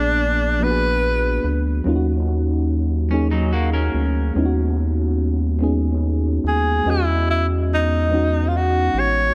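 Intimate and tender, this slow six-eight R&B excerpt moves at 48 BPM over lush chords from A#7b9 through D#m7 to Emaj13, with a mellow FM electric piano carrying the accompaniment throughout in soft, round, warbling tones touched by chorus and analog delay, while a rubbery, hollow square bass sits up front with a bouncy, resonant pluck. A breathy tenor saxophone sings the melody with vibrato, scooped notes and a whispered, smooth top, dropping out after 1.6 seconds and returning at 6.5 seconds, its phrases trailed by analog delay. In the gap, a twangy, slightly broken-up electric guitar slips in a quiet second line at 3.1 seconds, all within a lightly reverberant, echo-heavy mix.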